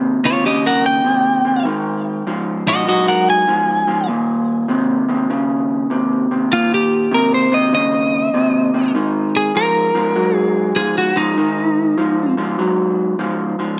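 A moderate plate reverb surrounds this short cut from a longer blues piece, with both guitars sitting up front. At 99 BPM in 4/4 with a swung eighth-note feel, a dark, lo-fi electric guitar through a small old amp plays a low riff throughout, while a lightly driven, compressed lead guitar enters at 0.3 seconds with a picked, slightly broken-up solo melody that ends at 12.3 seconds. The mood is laid-back and rollicking, moving through Eb7, Ab5, Eb5 and Ab7sus2, tuned to A4 = 438 Hz.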